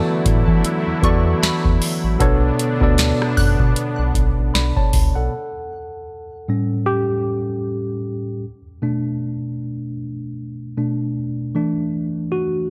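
Light reverb and a digital ambience frame this late-night, longing contemporary R&B excerpt in B minor, moving at 77 BPM in 4/4 with a swung sixteenth-note feel. A worn, slightly out-of-tune tine electric piano sits up front carrying the accompaniment, joined by a smooth, detuned sawtooth pad whose sustained chords carry chorus, tremolo and sidechain pumping. High above, a glassy, crystalline wavetable pluck adds a warbling, ring-modulated texture through chorus and delay from the background, while a rubbery, nasal square bass and a booming analog drum machine with a deep kick, crisp snare, rim click and metallic hats come in at 0.3 seconds. The harmony drifts from E9sus4 to Bm9, then by 5.3 seconds the pad, pluck, bass and drums have fallen away and the electric piano plays alone as a solo over A7, Bm7 and a return to E9sus4 until 12.7 seconds.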